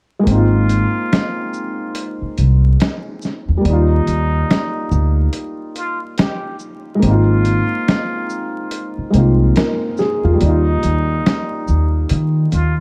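A soft, mellow felt-muted upright piano with a cassette-tape tint opens this nostalgic, cosy lo-fi hip hop excerpt at 0.2 s. At 0.3 s a woody pizzicato upright bass, gritty compressed finger snaps, hi-hat, shaker and snare, and a breathy, distant plunger-muted trumpet melody with a jazz-style wah-wah join it, swinging gently over alternating Ab6 and Ebmaj9 chords in a dark, intimate small-room production laced with vinyl crackle.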